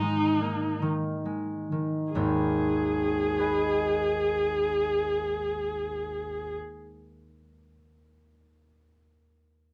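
A rich, focused viola, bowed by a single player with vibrato, carries a melancholic, elegiac melody over ringing, fingerpicked acoustic concert harp in this romantic classical duo in G# minor, moving in a rubato 4/4 at 42-52 BPM that slows over the first 2.1 seconds; the viola stops at 6.5 seconds while the harp continues to 7.8 seconds, set in moderate studio reverb and cut from a longer piece.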